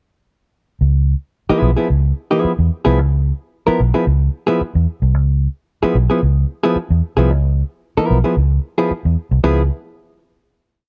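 A straight 4/4 funk groove at 112 BPM drives this short, energetic and playful piece, which opens on a Db7#9 chord. The vintage muted fingered electric bass enters at 0.8 seconds with a syncopated riff anchored on the downbeat, its foam-muted, round tone sitting up front and dotted with muted ghost notes and chromatic approach notes in a low register. At 1.5 seconds the hollow-body jazz guitar joins with clipped funk chords, its dark, clean and compressed sound also up front and set in plate reverb. The groove runs until 9.4 seconds, when the piece closes on a final chord. A light room reverb gives the whole recording a touch of air.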